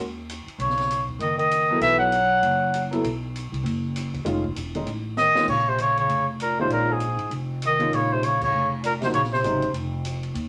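Cool and intense, this fragment of a fast modal jazz piece swings at 197 BPM in 4/4. Pizzicato upright bass with a woody tone opens the groove, joined by an acoustic drum kit with dark cymbals, a high-tuned snare and a boomy kick. A breathy, vintage-toned trumpet sits up front on the melody, supported by a second line a register below from a mellow bass clarinet that sounds distant and roomy, with light vibrato and scooped notes. The horns enter at 0.6 seconds over a suspended B9sus4 and an altered F7 chord, and a polished grand piano joins the accompaniment soon after. A drum fill at 5.2 seconds brings the horns back as the music settles into Bb minor on a Bbm9 chord, and the band hits an accent at 8.4 seconds, all in a natural studio room with moderate reverb.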